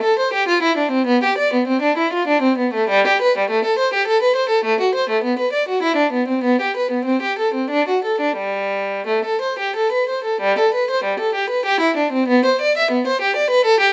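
In a lilting triple metre with a flexible, rubato pulse between 86 and 104 BPM, this serene, dance-like baroque-style suite movement unfolds in G major for unaccompanied violin. A single bowed violin carries everything alone from 0.0 to 13.9 seconds, ranging from G3 up to E5 with a rich tone, vibrato and a smooth, even line. Tuned slightly high to A4 = 443 Hz, the instrument sits up front, captured by close, detailed microphones. A light reverb adds gentle space around the player, and a new section begins at 10.4 seconds. This brief excerpt is cut from a longer piece.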